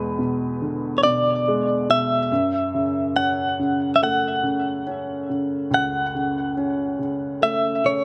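A clean, direct-recorded electric guitar carries the melody up front, its picked, compressed lines between B4 and F#5 colored by tremolo and tape echo. Beneath it, an intimate upright piano with a woody tone, long sustain and audible action noise supplies the accompaniment across the 8 seconds, moving from E7 to F#m7 at 2.3 seconds. This reflective, heartbroken acoustic folk-pop ballad in F# minor moves at a slow 70 BPM in a straight 4/4, with close, detailed microphones and a moderate large-studio reverb, tuned to A4 = 445 Hz and cut from a longer piece.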